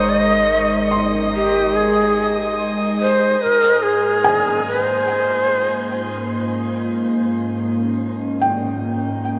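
Floating in free time, this luminous, peaceful ambient passage, cut from a longer piece, drifts over an Ab chord that gives way to Bbm11 over Ab at 3.4 seconds. A breathy, up-front shakuhachi carries the melody with bamboo chiff, vibrato and tape echo, singing between G4 and Eb5 until 6.3 seconds. Beneath it, a warbly, nostalgic tape-like pad of detuned sawtooth and triangle tones holds dark sustained chords through chorus and reverb, and it fades in across the second half to 9.4 seconds. A felt-muted upright piano adds soft, intimate arpeggios high in the register, its action noise audible and its notes repeating in tape echo. During the opening section only, a round, deep analog bass anchors the low Ab while a glassy texture of drifting overtones shimmers above. The whole recording sits in a lush shimmer reverb with a vintage cassette character.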